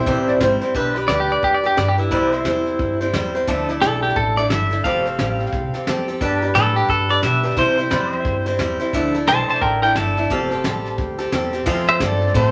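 A swung 4/4 groove at 176 BPM drives this heartfelt, nostalgic honky-tonk and classic country passage in C major, tuned slightly low to A4 = 437 Hz, with soft brush drums offering a dark, fat snare and punchy kick, a woody, thumpy pizzicato upright bass, and a bright, boxy swing-picked acoustic guitar up front. A worn, slightly detuned upright piano sounds only from 0.0 to 0.7 s before an up-front pedal steel guitar, clean and compressed with fingerpicked slide lines and volume swells, takes a solo from 0.8 to 11.7 s. A second pedal steel holds sustained chords in the background, all set in a small, wet room.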